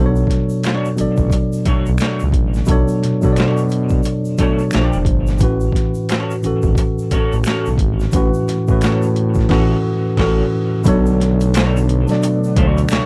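R&B and neo-soul with a smooth, sensual mood at 88 BPM and a swung sixteenth feel: a worn, slightly out-of-tune tine electric piano and a saturated sawtooth synth bass carry chords moving from Bm9 through Bb6 and A6, joined by a gritty, pitched-down boom bap drum kit with a thumpy kick and high-tuned snare, a distant egg shaker with finger snaps, and a slightly broken-up, lo-fi electric guitar wrapped in lush chorus and tape echo, until a band accent at 9.5 seconds gives way to a very quiet, warbling analog pad entering at 10.9 seconds, all in a dry, close 1970s-style studio sound.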